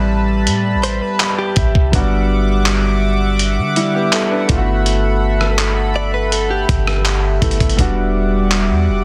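A gritty, sampler-style drum kit of thumpy kick, rim click, hi-hat and handclaps enters at 0.5 seconds and sits up front with a deep, boomy 808-style bass in this late-night, sensual contemporary R&B cut at 82 BPM in E minor. A clear concert grand piano adds a fill from 0.8 seconds, a shimmering, retro pulse-width pad holds sustained chords, and a clean, direct-recorded electric guitar picks arpeggios through subtle chorus and tape echo over Am9 moving to Em9/G, with digital ambience and a dense, heavily limited modern master.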